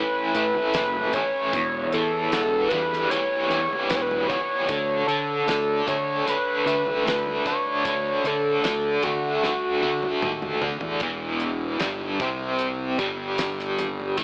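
A screaming, gritty synth lead with vibrato, distortion and analog delay carries the melody over a biting, double-tracked guitar riff with tremolo, opening this dark, hypnotic psychedelic rock piece at 76 BPM in E dorian, tuned to A4 = 436 Hz and moving through A, Em and D. A round fuzz bass, a damped 70s kit with a fat snare, tight kick and analog delay, and very quiet, ringing congas join almost at once, and a drum fill leads into a new section on Em at 11.0 s, shortly after the lead stops at 10.6 s. The echo-heavy mix has light reverb, a small room ambience and an AM radio sound.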